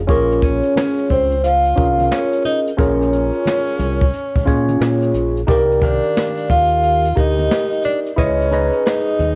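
A dark, round fingered electric bass opens this nocturnal, mellow jazz-hop excerpt at 0.0 seconds, joined at 0.1 seconds by the full band, all playing through to the end. A vibraphone struck with soft mallets carries the melody with a metallic ring and slow motor vibrato, set in a boxy small room and colored by cassette tape. A breathy tenor saxophone in a jazz style sits beneath it as a second line, its subtone and scooped notes clear and present. A barky tine electric piano fills out the chords up front, lightly overdriven through a combo amp with phaser and tape grit. A brushed acoustic drum kit with a boomy kick and medium-tuned snare swings the sixteenth notes, while a compressed, saturated tube shaker and soft-handed congas stay in the background. The harmony moves from a minor seventh chord to richer ninth chords as a second section arrives at 5.5 seconds, all within a home-recorded small room ambience.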